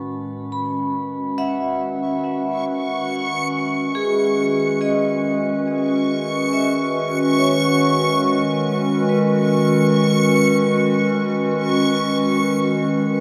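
Ambient excerpt at 70 BPM in 4/4, melancholic and serene, where a warbling, nostalgic tape-like pad sits up front with detuned, lo-fi sustained chords moving from Aadd9 to C#m7 through chorus and shimmer reverb, a metallic, ringing vibraphone struck with hard mallets plays dark arpeggios through analog delay and fades out across the whole 13.2 seconds, and from 2.5 seconds a reversed, granular, bright swelling texture holds a high C#6, all set in a plate reverb with an echo-heavy mix and tuned to A4 = 437 Hz.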